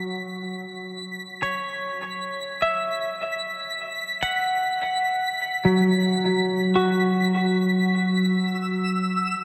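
Ambient in free time, this short, spacious and reflective passage fades in on a clean, compressed semi-hollow electric guitar picking up-front arpeggios from F#3 to F#5, colored by a phaser and a diffuse ambient delay, moving from E5 to F#sus4 and settling on a rootless Dadd9/F# at 8.0 seconds. High above, a twinkling granular synth texture fades in alongside it, a slow-attack FM shimmer with sparkling octave-up glints and its own reverb. The whole mix sits in a dark, huge wash of reverb that lets each note hang and blur.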